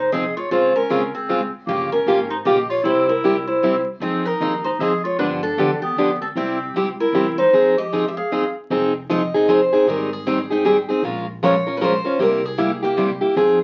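A plugged-in steel-string acoustic guitar sits up front in this fiery, bittersweet jazz manouche waltz, its picked accompaniment crisp with fresh strings and a touch of finger squeak. Over it, a second picked acoustic guitar carries the melody in a sparkling concert tone. A bright, forceful clarinet plays a distant, roomy second line with jazz vibrato until it drops out at 8.5 seconds. Deep in the background, a woody, thumpy pizzicato upright bass anchors the swung 3/4 pulse at 154 BPM in F minor. The chords move from Fm7 through Dbmaj7 and Gm7b5 to C, and a second section opens at 8.7 seconds, passing through Abmaj7 and Bbm7 toward C7. A small, wet room reverb and the crackle of a very old 78 rpm record give this fragment, cut from a longer piece, an aged, intimate sound.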